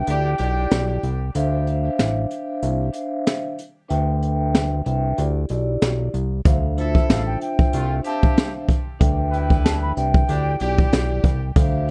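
A breathy, mellow flute opens this short boom-bap hip-hop excerpt in D dorian alongside a soft-mallet vibraphone and a fat analog bass, with a brilliant trumpet section's brief stab and a brushed jazz kit arriving at 0.1 seconds. The groove sits at 94 BPM in 4/4 with a swung sixteenth feel, gritty and tough in mood, while the chords cycle through Em7, Dm9 and Cmaj7/D. The excerpt opens in a break, and once the flute's opening phrase ends, the vibraphone rings with slow motor vibrato and a vintage, band-limited cassette character, over a thick, detuned bass that sits up front with a quick filter pluck and sustained body. The drums are dark and boomy in the kick, with a high-tuned snare and a rolled-off top, as if played in a small room. At 6.8 seconds the flute returns with crisp attacks and expressive vibrato, echoed by delay, as the trumpet section re-enters with light vibrato and a pop-style ensemble sheen, also trailed by delay. 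The production is dark and dry, with little reverb.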